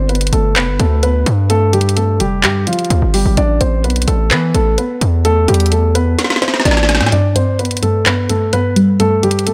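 A dark, mellow grand piano opens this dark, menacing trap excerpt, its intimate tone carrying audible action noise and a short, vintage sustain under a low-pass filter, while a distorted 808-style bass hits heavy and saturated beneath it. The electronic trap kit joins almost at once in a half-time feel at 128 BPM, with a woody snare, warm hi-hats and handclaps sitting up front. The harmony moves from Gsus2 to Am and back to Gsus2, and the aggressive bass, a sine with a noise layer, a fast attack and a decaying tail, drives the low end. A drum fill arrives at 6.2 seconds, and at 7.1 seconds the bass drops out as a gentle, round pluck enters, its wave-folded blend of triangle, sine and sawtooth shaped by chorus and a low-pass filter. Light reverb and a digital ambience surround the mix as the piece is cut off mid-flow.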